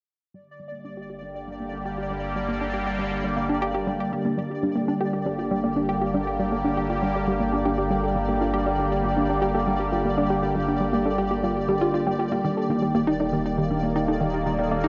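Drenched in spring reverb and echo with a muted top end, this hypnotic, cosmic piece of sequencer-driven space music in G minor at 119 BPM fades in its bright, airy, detuned resonant pad and deep analog bass from 0.3 seconds, while a hollow, bouncy square-wave pluck riff and a pulsing, tempo-synced gated texture ride beneath; a soft, round pluck joins with gentle background arpeggios at 4.5 seconds, and the harmony moves from G minor to E-flat at 12.4 seconds.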